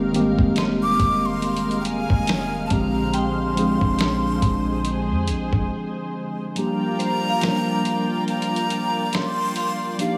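Contemporary R&B at 70 BPM with a longing, moody feel and swung 16ths, where a mellow tine electric piano and a lush, detuned unison pad with chorus carry the chords from Fm11 to Bb13 under a breathy, expressive jazz flute melody up front, a glassy FM synth bell with chorus, phaser and digital delay glints in the background, a gritty, compressed sampler-style drum kit with a thumpy kick drives the groove alongside a round, deep 808-style bass that drops out at 5.7 seconds for a brief break, and from 6.6 seconds the music shifts to Gm7 with the kick muted, all set in a small room ambience and cut from a longer piece.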